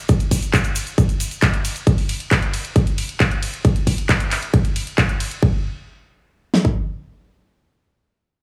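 A big-room dance drum kit with a punchy kick and huge snare drives this bittersweet, soaring trance drop up front, entering together with an analog drum machine's handclaps, hi-hat and ride cymbal re-recorded in a large room and a grainy, bright cabasa in the background that lasts until 1.8 seconds; the machine drops out at 5.4 seconds and the kit carries on alone to 6.8 seconds in a dry, small room.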